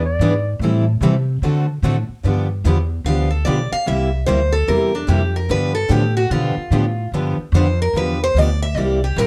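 A breathy clarinet note with scooped pitch and vibrato opens this playful, swinging jazz manouche excerpt at 147 BPM in G mixolydian, over two picked steel-string acoustic guitars (a boxy, up-front parlour guitar with finger squeak, and a quieter parlour guitar set in the background) and a woody, thumpy upright bass, before a full-bodied jumbo guitar with fresh strings takes the melody at 3.1 seconds, in a dark production with light reverb.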